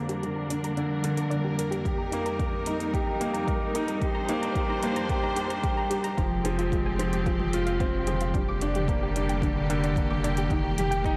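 Intimate and melancholic, this piano and strings electronica opens with an up-front concert grand piano riff, lush distant bowed strings carrying a filter sweep through the build-up, a mellow chorused pluck arpeggiating in the background, and overdriven deep house hats and toms, before a punchy layered kick joins at 1.9 seconds and a dark, round analog bass arrives with the drop at 6.2 seconds, all wrapped in a dreamy plate reverb.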